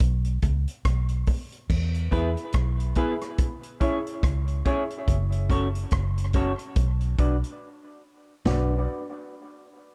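A round, foam-muted vintage bass and a small-room drum kit with a punchy kick and dark cymbals open this heavy, spacious dub reggae excerpt at 71 BPM in B dorian, with a swung sixteenth feel and a break in the first 1.7 seconds. At 2.1 seconds a clean semi-hollow electric guitar with lush chorus, low-pass filtering and tape echo joins as accompaniment, alongside natural-sounding grand piano stabs that are also filtered and echoed, while a filter sweep runs under the changes from E to C#m, F#m and Bm. The dark production keeps bass and drums up front, with a second break near 7.6 seconds before the cut.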